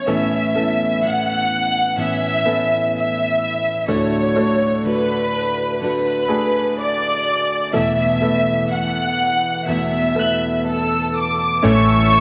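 A dark, woody violin section carries the heartfelt melody up front in this slow, emotional pop excerpt in A major at 62 BPM, over clear grand piano with deep bass and warm, full-bodied fingerpicked acoustic guitar arpeggios, all bathed in a wet echo-chamber reverb, before a round, punchy muted electric bass and a lush, smooth-topped string section with portamento enter at 11.6 and 11.7 seconds as the chords return to A.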